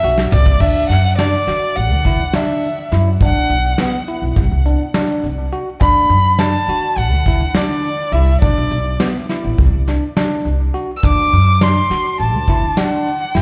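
Heard through a club's PA, this live recording carries a light reverb that places the band in a club. It is a driving, tense piece of progressive instrumental music in 9/8, moving at 207 BPM counted in eighths and tuned to A4 = 443 Hz, and it opens partway through a longer performance. Up front, a single bowed violin sings the melody with vibrato, portamento and a smooth, expressive top, trailed by tape echo. A bell-like tine electric piano spins bright, clean arpeggios beneath it, also touched with tape echo, while a pizzicato upright bass gives a woody, dark foundation. A vintage kit played with brushes offers a punchy kick and a rolled-off top, opening with a drum fill from 0.2 to 0.6 seconds, and a grainy egg shaker sits in the background from 0.6 to 12.8 seconds as the harmony circles through Bm, Dadd9, Csus2, D6 and D7.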